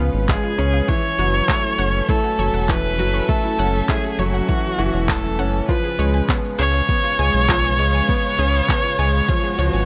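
A clear, smoothly bowed solo viola carries the melody up front from 0.3 seconds in this moving, intimate piano and strings electronica, with tape echo trailing its vibrato over a round, deep analog bass that pumps to the sidechain. A baby grand piano plays a present riff, while a dark chamber string section holds soft sustained chords and a detuned analog pluck sparkles with chorus-laden arpeggios in the background. An overdriven electronic kick and a crisp, tape-toned kit of handclaps and hi-hat drive the straight groove, and a faint electronic swell rises at 9.5 seconds, all set in light reverb and digital ambience.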